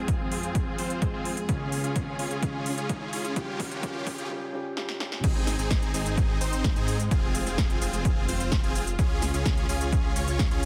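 A straight 4/4 pulse at 128 BPM drives this anthemic, uplifting festival progressive house excerpt in Ab major, cut from a longer piece. A punchy, overdriven electronic kick sits up front, joined by a layered big-room kit with a punchy snare, crisp hi-hats, cabasa and crash, re-recorded in a large room and carrying fills during the build-up. Over the first 5.2 seconds a filter sweep runs across huge, lush supersaw chords, while a soft, felt-muted upright piano with a dark, intimate tone pumps under sidechain and delay. A very quiet electronic riser enters beneath at 1.6 seconds. At 5.2 seconds the drop arrives as the piano stops and a thick, menacing detuned saw bass with tube saturation takes over the low end, its detuned sawtooth beating as it pumps under sidechain. Throughout, a very quiet studio string section holds bowed, vibrato-rich chords over a progression moving through Fm, Db, Eb and Ab, all set in light reverb and a dense, heavily limited modern master.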